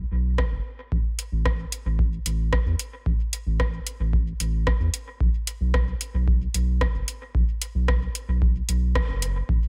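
A round, dark analog bass with a fast attack and sidechain pumping anchors this deep, hypnotic dub techno excerpt at 112 BPM, moving between F#1 and E2 beneath an overdriven electronic kick drum and a booming analog drum machine whose metallic hi-hats and rim clicks carry overdrive and dub echo, all three up front in a dry space, before a band accent lands at 9.0 seconds.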